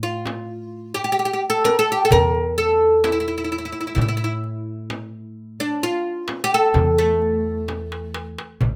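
Arabic maqam ensemble piece in A maqam hijaz, melancholic and hypnotic at 130 BPM in 10/8, where a bright, woody, plectrum-plucked fretless oud with double strings leads up front over a growly pizzicato upright bass, joined at 0.3 seconds by a crisp, saturated metal-shell darbuka and a small, soft-handed frame drum, with a drum fill arriving at 7.7 seconds, in a rough home-demo mix with moderate studio reverb, cut from a longer piece.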